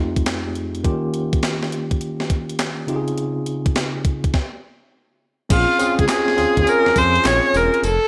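A clean, low-pass-filtered tine electric piano opens this confident, bouncy R&B new jack swing excerpt over a gated 80s digital drum machine with a thumpy kick, gated-reverb snare, handclaps, hi-hat, tambourine and crash, and after a stop at 4.3 seconds the music shifts at 5.5 seconds as a rich, bowed viola with vibrato takes the melody up front, a smooth, detuned sawtooth synth bass enters beneath it, and a hollow, distant group handclap sits barely audible in the background.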